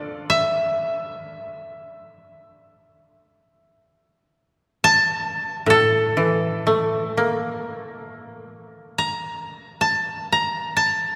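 Austere and calm, this short excerpt of Japanese chamber music unfolds in free time in A miyako bushi, tuned slightly high with A4 at 444 Hz. Two kotos share the texture, one carrying the melody from A4 up to Bb5 while the other supplies accompaniment lower down, reaching from A2 to D5. Both are plucked with fingerpicks and sit up front, their woody tone kept dry and close even as a long cathedral-like reverb of 4.6 seconds fills the church or concert hall around them. The accompanying koto falls away at 9.1 seconds, leaving the melody koto to carry on alone until the cut at 11.2 seconds. The passage restates its opening material at 8.0 seconds, giving the fragment a sense of quiet return.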